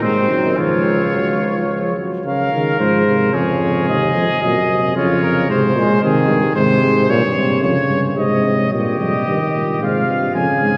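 A clear, up-front cornet with light vibrato and a soft attack carries the melody in this serious, contemplative classical canzona for brass ensemble, an excerpt from a longer piece in Db major at 111 BPM in 3/4. A distant, roomy trumpet adds a second line, falling silent at 5.5 seconds and returning at 8.7 seconds, while a mellow trombone with a smooth top supplies accompaniment over a vintage-toned tuba bass. The ensemble is heard from further back in a cathedral, its long reverberation lending the imitative writing a solemn, spacious air.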